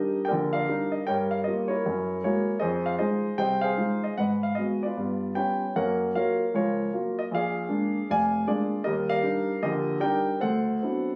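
A warm concert grand piano plays solo jazz in E-flat major at 154 BPM with a relaxed, rubato swing feel, its deep bass and up-front presence carried by moderate studio ambience and a phone-in-the-room character as rich chords such as Ebmaj7, Gb9, G7#11 and D13 pass through this 11.2-second excerpt cut from a longer piece.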